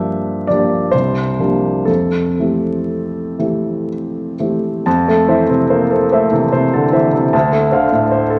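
Moving in 3/4 with free rubato at roughly 59 to 79 BPM, this brief passage, cut from a longer impressionist solo piano piece in F major, feels dreamy and luminous. A lone grand piano sounds clear and intimate, placed up front with audible action noise that lends it a natural closeness as it ranges from C2 to A5. The harmony drifts from Gm7 through C9sus4 to a glowing Fmaj9, then a second section opens at 4.9 seconds on Fmaj7 and settles onto Dm7 at 7.3 seconds before the cut at 8.4 seconds. A wet recital-hall reverb with a 1.4-second decay surrounds the playing. Vinyl crackle and a dulled top end give the recording an aged, hazy patina.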